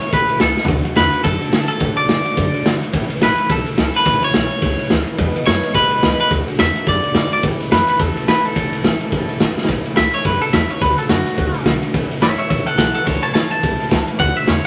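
This rowdy, retro rockabilly excerpt in A major moves at 213 BPM with a swung eighth-note feel, built on a thumpy, woody pizzicato upright bass with gut strings and a bright, full-bodied jumbo steel-string acoustic guitar picked in the background, its fresh strings showing finger squeak. Up front, a twangy, compressed electric guitar carries the picked melody, while a raw garage kit with a punchy kick, medium-tuned snare, ride and toms sounds saturated and gritty, with a rolled-off top in a pumping stone room. Drum fills land at 0.5 and 9.5 seconds, and at 9.7 seconds the electric guitar breaks into a clean solo under moderate studio reverb.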